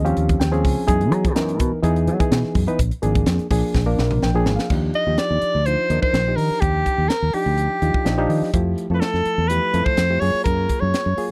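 A dry, close 1970s-style studio sound frames this funky, bright slice of electric jazz fusion, with a barky, lightly overdriven reed electric piano comping sus chords and dropping short fills over a punchy fingered electric bass and a crisp, airy drum kit with a high-tuned snare and tight kick. After a drum fill ending at 4.7 seconds the harmony turns to lush major-ninth chords, and at 5.0 seconds a breathy soprano saxophone enters with a clear solo line marked by light vibrato, subtone and scooped notes.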